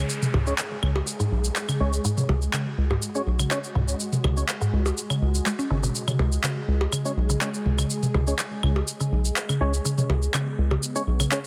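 Minimal techno at 123 BPM in a hypnotic, sparse mood, cut from a longer piece, where a woody, mallet-like synth pluck riff with chorus and delay rides over a rubbery square bass, a swarming, detuned drone, electronic shaker and handclaps, overdriven electronic toms with percussion blips and claves, and dark, percussive organ stabs, with filter sweeps on the pluck and stabs, a downlifter over the first 2.0 s, and a heavily compressed radio sound in light reverb.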